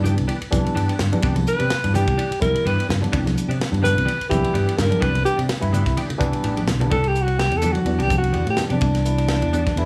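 A tight funk drum kit sets a 4/4 groove with a light swing on the sixteenths, its dry, natural sound built from hi-hat, ride cymbal, a medium-tuned snare and a tight kick. Very quiet, low-tuned congas add ringing, saturated color beneath it, while a growly, amped fretless bass sustains prominently under a lush chorus. A clean, direct tine electric piano spreads a Cmaj9 chord with the same lush chorus, and a dark, picked electric guitar adds compressed stabs through an analog chorus. At 1.5 seconds a mellow alto saxophone steps up front for a jazz-style solo, its smooth top shaped by vibrato and scooped notes. A drum fill at 6.6 seconds leads into a new section, and the whole slick, bright electric jazz fusion passage sits in light studio reverb as part of a longer piece.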